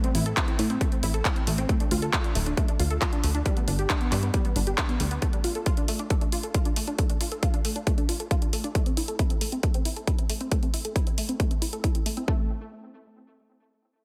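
Light reverb and a digital ambience frame this driving, euphoric uplifting trance excerpt, cut from a longer piece, at 136 BPM in straight 4/4 and A minor. A bright, lush unison pluck built from detuned sawtooth and sine layers plays arpeggios from G3 to A4, carrying analog chorus, tape echo and sidechain pumping, while a filter sweep runs across it from 0.0 to 12.3 seconds. Beneath it, a punchy, wave-folded analog bass with a mellow filter pluck and sidechain pumping sits up front between D1 and A2, dropping out at 5.2 seconds. A layered, produced big-room dance kit supplies handclaps and hi-hat, and an up-front electronic kick adds a punchy thump from 0.4 seconds. The harmony moves through A5, Dm, G, Dm and Am before the parts fall away at 12.3 seconds into a brief closing passage.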